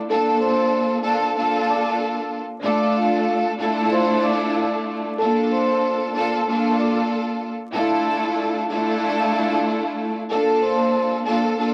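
A mellow, airy vibraphone played with soft mallets opens this gritty, moody hip hop excerpt with a swung feel, its ringing melody carrying a slow motor vibrato and a tape echo. From 0.1 seconds a lush, up-front studio string section joins in smooth, even bowed chords, alternating between Bbmaj7 and Dmadd9/A, and holds until 11.7 seconds after the vibraphone stops at 11.1 seconds. Both parts are filtered and run through cassette tape, set in light reverb with vinyl crackle for a homespun, lo-fi sound.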